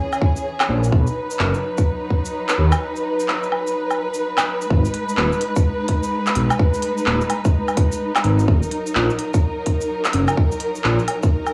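Nocturnal and ghostly, this future garage excerpt moves at 127 BPM in G# minor with a 63% swing on the sixteenths, as a dark, woody studio string section holds lush, sustained chords that pump against the sidechain from the first moment. An organic electronic drum kit of handclaps, crisp hi-hats, shaker and woodblock is soon joined by a tight electronic kick, both re-recorded in a large room, while a deep, rumbling detuned saw bass enters at 0.7 seconds and sits up front. The chords move from A#dim through B to G#m after a break between 2.8 and 4.7 seconds, then settle on D#m at 8.5 seconds, all framed by a dry, gritty cassette-tape sound with light reverb and small room ambience.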